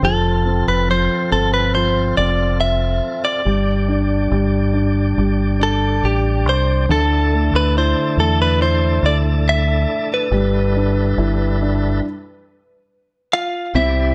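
Lightly reverberant, this tender, emotional pop passage at 70 BPM in 4/4 sets a clean, compressed, direct-recorded electric guitar melody up front over a warm concert grand piano with long sustain, a full, lightly overdriven tonewheel organ with key click and fast rotary speaker holding sustained chords, and a dark, round, punchy fingered dub bass, moving through F, G5, Dsus2 and G6 before a stop at 12.0 seconds.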